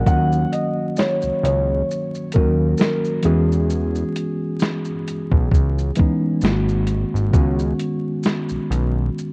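Swung sixteenths drive this reflective, hazy lo-fi hip hop excerpt on a compressed, muffled sampler-style kit of thumpy kick, snare, hi-hat and shaker with 12-bit grit. Beneath, a fat, detuned sawtooth analog bass and a worn, slightly out-of-tune tine electric piano coloured by cassette tape support a soft, felt-muted upright piano melody, its action noise audible, which falls away at 5.9 seconds, all set in a dark production dusted with vinyl crackle and light reverb.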